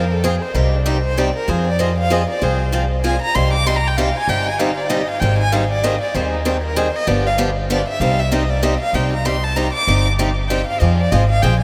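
A vast, echoing space surrounds this fiery, virtuosic stretch of acoustic string swing in the jazz manouche style, its huge, wet reverb giving every note a long, ringing tail. The piece moves at a brisk 193 BPM in 3/4 with a swung eighth-note feel, sitting in C minor with the tuning set slightly low at A4 = 437 Hz. A single bowed violin, close and up front, takes a solo from start to finish, its warm tone shaped by vibrato, soft attacks and expressive portamento. A bright, boxy picked acoustic guitar supplies the swing accompaniment, while a woody, thumpy pizzicato upright bass with steel strings sits prominently underneath. The harmony moves through Fm, Cm, Abmaj7 and G7 before returning to Cm and closing on Fm, and the opening section repeats at 8.9 s, with the passage cut from a longer piece at 11.6 s.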